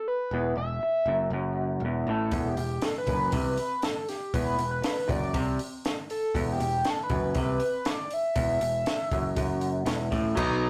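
A straight 4/4 pulse at 119 BPM drives this restless, cool indie rock excerpt in E minor, built on an E5 chord and cut from a longer piece. A screaming, gritty synth lead with distortion and phaser carries the melody up front from the start. A twangy, slightly broken-up guitar through a small old amp plays the riff with spring reverb, over a growly, punchy picked bass, and a dark, compact cocktail kit with a high-tuned snare and punchy kick joins at 2.3 seconds, all captured in a rough, tube-saturated rehearsal-room sound with light reverb.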